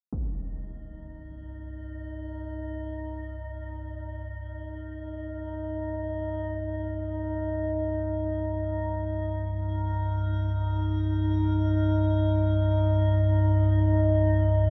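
A deep, ominous rumbling drone sits up front from 0.7 seconds, sustaining low and dark with a vintage, warbling edge, while a metallic, inharmonic drone with an eerie FM shimmer and chorus joins at 0.9 seconds on a sustained E-flat. This dark ambient piece unfolds in free time around C minor, fading in slowly as a synth drone and hanging in a vast, echoing, cathedral-like space that feels desolate. It is cut from a longer piece.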